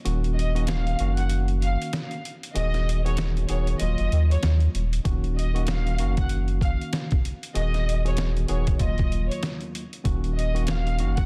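A worn, slightly out-of-tune filtered electric piano opens this moody, gritty boom-bap hip-hop excerpt in Eb minor at 96 BPM, joined at once by a round, deep sine sub bass and a compressed, pitched-down, tape-warm sampler-style kit with a thumpy kick, medium-tuned snare and hi-hat, before a dark, expressive bowed violin section with vibrato and portamento enters softly at 0.4 seconds through filtering and digital delay, all in a dry, dense, heavily limited mix.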